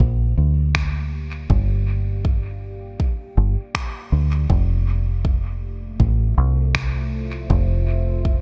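A round, punchy fingered electric bass, dark and foam-muted, sits up front in this deep, spacious ambient dub fragment, joined from the start by a deep electronic kick with a lightly swung 4/4 feel. Electronic finger snaps with dub echo come in at 0.7 s and drop out at 6.9 s, while a moody, warbling pad of detuned sawtooth and sine layers with a sub octave fades in beneath, its chorus and built-in reverb softening long sustained chords. The harmony moves from Gm7 to Fmaj7 at 4.5 s, and the rest of the mix stays close and dry.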